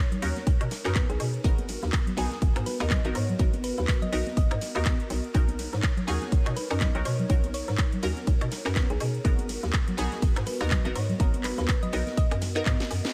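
Light reverb and a studio ambience frame this hypnotic deep house section in G# minor at 123 BPM, swung on the 16ths, where an up-front, punchy electronic kick and a tape-warm house kit with cracking snare, finger snaps, handclaps, metallic hats and ride drive the groove, while a faint acoustic kit played with bundle sticks and soft-handed congas and bongos sit in the background. A hollow, bouncy FM bass and muted, detuned dub chord stabs, filtered, wave-folded and bathed in phaser and diffuse delay, pump against the kick, and an airy, breathy pad with chorus holds sustained Bmaj9 and G#m9 chords underneath. From 0.9 seconds a round, tine-like thumb-piano-style pluck adds a gentle melody, and a drum fill closes the passage at 12.8 seconds.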